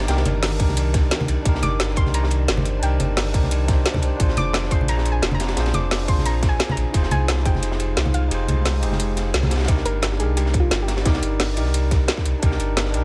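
Liquid drum and bass at 175 BPM in C minor, this short cut from a longer piece feels dreamy and rolling, moving through Cm7, Bb7 and Fm9 before returning to Cm7. A soft, round pluck carries the melody with a dark chorus sheen, vintage 12-bit sampler grit and tape echo, while a bright, clean tine electric piano plays accompaniment through a dub echo. Beneath them, a glassy, ethereal FM pad holds very quiet sustained chords until 9.7 seconds, and a deep, full sub bass with an octave layer sits up front. The drums stack a crunchy, saturated breakbeat kit with a high-tuned snare and rolled-off top, a drum and bass kit with a woody snare and metallic hats placed up front, and background congas struck with hard hands. A tight electronic kick enters at 0.6 seconds, drops away near the end of the first passage, and returns at 9.7 seconds after a band accent. Light reverb gives the whole a gentle sense of space.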